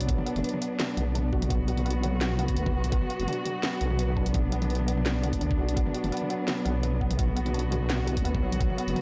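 Half-time drum and bass at 169 BPM in B minor, spacious and heavy, this dry, gritty cassette-toned fragment holds on a B minor chord as a lush bowed cello section sustains with vibrato under sidechain pumping, a felt-muted upright piano plays mellow arpeggios through analog delay with audible action noise, a deep, up-front wobble bass with chorus wobbles warmly below, and a layered kit of cracking snare, bright hats and toms rides over a knocking electronic kick that runs from 0.1 to 8.7 seconds.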